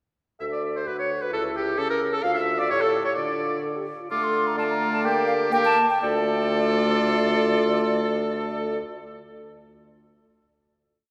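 A wet church reverb surrounds this short, stormy classical-period movement for wind quintet in D minor, which moves quickly in 2/4 at about 117-132 BPM and begins at 0.4 s. The hollow, airy concert flute carries the tune with vibrato, doubled in unison by the clear oboe. The distant clarinet adds a soft-attacked counter-melody, the French horn plays warm inner lines and sustained chords, and the mellow, punchy bassoon walks beneath before the music slows from 3.6 s into a brief coda and settles on a final D minor chord at 6.0 s.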